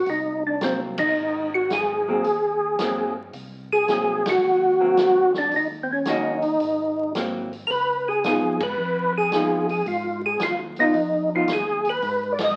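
A percussive tonewheel organ opens this soul jazz organ trio excerpt up front, carrying a round melody with third harmonic percussion through chorus vibrato and a slowly turning rotary speaker, while a second, lightly overdriven organ holds down a dark bass line and a big-band drum kit swings on ride, hi-hat, punchy kick and snare. A clean, picked hollow-body jazz guitar joins with dusky accompaniment at 0.6 seconds, and the band hits accents together as the greasy groove moves from Ab9 through Ebm7 and back to Ab9 before landing on Db9. It all sits in a moderate large studio reverb beneath the crackle of a very old 78 rpm record.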